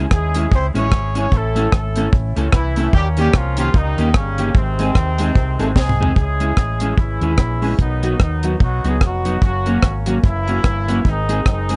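A dry, close-sounding cut from a longer ska piece, energetic and mischievous with a swung feel, where an up-front reggae drum kit with a high-tuned snare and tight kick plays alongside a round, punchy hollow-body bass, a dark, clean semi-hollow guitar with analog chorus, and a loose, vibrato-laden horn section doubled in octaves through analog delay, with a drum fill at 5.8 seconds ushering in the second section.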